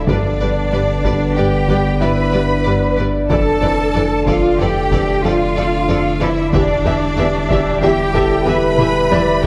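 The up-front cello section carries the bass with a rich, smooth, even bowed tone and lush vibrato, anchoring this tense, vast cinematic cue that blends orchestra and electronics at 93 BPM in 5/4, in D dorian. Beneath it, a punchy sine sub bass with a pitch-drop attack and a studio double bass section in the background deepen the low end. A dark, ominous drone of detuned triangle and sawtooth tones rumbles and evolves through its own reverb, while a distant, roomy French horn section holds sustained chords. A violin section plays a focused second line above a smooth-topped violin melody that enters at 0.1 seconds; both sit over a viola section that sounds far off in the background. A brilliant concert grand piano adds delayed texture with a natural tone, and a compressed, saturated taiko ensemble struck with heavy sticks drives from behind, closing with a drum fill at 8.8 seconds. The harmony moves from G to Dmadd9/F to Em, and a wet scoring-stage reverb gives this excerpt from a longer piece a vast sense of space.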